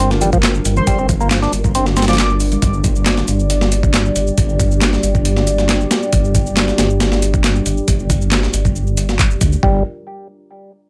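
Breakbeat at 137 BPM in G minor, a raw, funky cut from a longer piece built on a single Gm7 chord, with a gritty, overdriven sampler-style drum kit up front (thumpy kick, medium-tuned snare, hi-hat) joined by layered electronic shaker and handclaps and bright, band-limited vintage congas in the background until 2.6 seconds. A thick, menacing detuned saw bass carries a filter sweep beneath a deep, moody analog pad treated with chorus, phaser and sidechain pumping, while a fat, percussive tonewheel organ riff with overdrive, tube saturation and tape echo plays at the start and returns briefly at 9.6 seconds. Between 0.8 and 2.3 seconds an airy, dreamy lead drifts in the background through chorus, telephone filtering and tape echo, all set in a light reverb.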